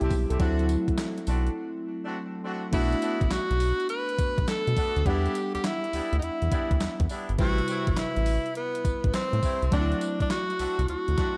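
This R&B cut in a new jack swing style rolls at 103 BPM with a swung sixteenth feel and a slick, confident mood. A thumpy 12-bit drum machine with kick, snare, hi-hat, handclaps, tambourine and crash sits under a deep, round analog bass, while a mellow FM electric piano with chorus and slapback echo and a distant horn section firing stabs fill out the harmony over chords moving through D7, Bm7, Em7 and Am7. After a break from 1.6 to 2.7 seconds, a bright, punchy tenor saxophone with vibrato and scooped notes takes the melody up front, and the whole piece is bathed in a lush hall reverb that gives it a big arena sound.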